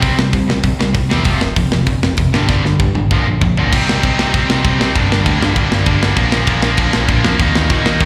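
Urgent and raw, this short punk rock cut races along with two bright, overdriven picked guitars sharing a riff, one sitting in the background, over a growly, punchy picked bass and a tight, up-front metal drum kit with bright cymbals and a medium-tuned snare, rolling through a drum fill from 2.5 to 3.7 seconds as power chords give way to full chords, all heard through a live venue's PA with a recital hall's reverb.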